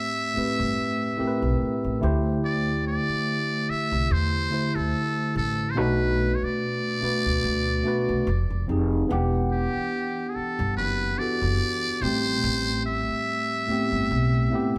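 A moderate stone-room reverb surrounds this short neo-soul and R&B cut from a longer piece, a live band in one room playing a sultry, soulful groove in E minor at 72 BPM with a lightly swung sixteenth feel. Up front, a bright, clean tine electric piano heard through its built-in speakers carries the chords, moving from Am9 through D9sus4 and Bm7 to a brief Fm9 before settling on Em9 and returning to Am9. A pizzicato upright bass with a woody, growly tone enters at 0.4 seconds, while a solo trumpet with a metal mute leads the melody in a buzzy, raspy voice, with scooped notes, light vibrato and punchy, gritty attacks.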